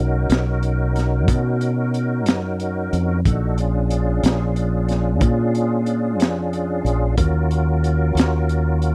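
Soulful and mournful, this slow blues excerpt in 12/8 at 61 BPM pairs a clear tonewheel organ holding sustained chords through slow rotary speaker and chorus vibrato, with audible key click, against a round, dark fingered electric bass and a gritty, saturated breakbeat drum kit with a high-tuned snare and tight kick that enters at 0.3 seconds, all captured in a dry, close 1970s-style studio sound as the harmony moves from Bmaj7 through Bb7#9 to Ebm9.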